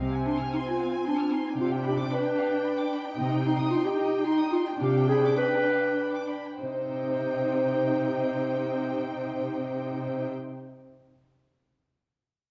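Set on a dark-toned scoring stage with a moderate reverb, this restless, urgent excerpt from a quick classical-period orchestral movement in triple time moves with a rubato feel and slows down between 2.4 and 6.6 seconds before a new section begins. Distant, lush violin sections carry the melody and a sliding, portamento-tinged second line, while expressive violas with vibrato fill in the accompaniment over a rich, smooth cello bass placed up front. A mellow clarinet enters at 0.3 seconds with its own second line, sitting up front against the bowed strings.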